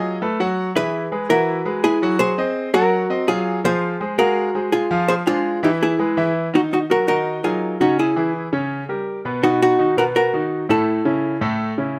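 Driving and danceable, this short Latin excerpt moves at a brisk 166 BPM in a straight 4/4 over a light reverb. A dark, clean, hollow-body archtop guitar carries the picked, compressed melody up front, while a brilliant concert grand piano with a deep bass and short sustain supplies polished accompaniment. The harmony moves through rich extended chords, shifting into a new section at 6.5 seconds; the guitar drops out at 11.4 seconds, leaving the piano until 12.0 seconds.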